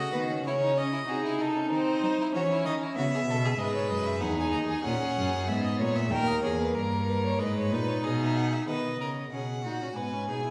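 A stately, joyful baroque-style fugue for string quartet opens with all four bowed voices sounding together at 95 BPM in a straight 4/4. A rich, smooth first violin carries the melody over a clear second violin line and a dark, expressive viola whose soft-attack accompaniment slides with portamento, while an up-front cello anchors the bass with similarly expressive glides and vibrato. Tuned to A4 = 441 Hz and bathed in the reverb of a recital hall, this fragment moves through minor-key harmony around G# minor before shifting to a new section at 8.7 seconds that brightens onto B and E.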